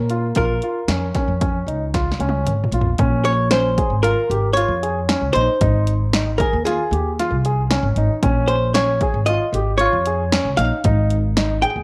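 A moderate plate reverb surrounds this short cut from a longer progressive instrumental, with the guitar, bass and drums sitting up front in the mix. The band music is driving and brooding, set in Bb dorian at 114 BPM in a straight 5/4. A clean, dark archtop guitar carries the melody with a picked, compressed, hollow-body tone and a slapback echo, while a woody pizzicato upright bass on steel strings holds down the low end. A concert grand piano with a deep bass plays arpeggios underneath, and a tape-warm, punchy analog drum machine with a punchy kick and snare keeps time on hi-hat, kick, snare and toms. After a drum fill from 1.9 to 3.0 seconds, the harmony moves from Bbm to Bbm7 and a rootless Fm7/Ab, then returns to Bbm7 and Fm7/Ab.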